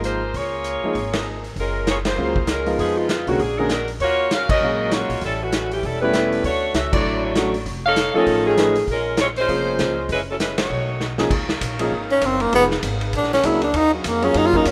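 Big band swing in Db major, this brassy, swinging excerpt moves at a brisk 197 BPM with a 60% swing on the eighth notes. A bright saxophone section carries the melody up front from the start with light vibrato and a smooth top, while a warm grand piano with long sustain comps underneath and a woody pizzicato upright bass anchors the low end. The vintage drum kit sounds dark and rolled-off, with punchy kick, medium-tuned snare, hi-hat, ride and crash in a pumping small room, and the band hits accents at points such as 1.1 and 6.9 seconds over rich extended harmony. A drum fill at 11.0 seconds hands off to a close-miked tenor saxophone solo entering at 12.1 seconds, warm and vibrato-laden, as a tight, warm saxophone section holds sustained chords in the background. A moderate, lush hall reverb surrounds the rough, demo-like mix.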